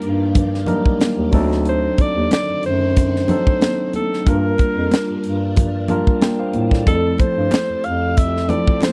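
A dry, close 1970s-style studio sound in a small room frames this brief cut from a lush soul piece at 92 BPM in 4/4, with a light sixteenth-note swing over Ebmaj7, D7b9, Gm7 and Fmaj7. Up front, a warm alto saxophone with vibrato sings the pop-style melody as a clean tine electric piano accompanies, a dark, scooping bass clarinet with jazz inflection carries the bass, and a tight, polished funk drum kit with a high-tuned snare drives the groove. In the background sit a swirling, bright string machine treated with ensemble chorus and phaser, ringing high-tuned congas struck with hard hands from 0.3 s, and a very quiet, hollow group handclap that joins at 7.5 s.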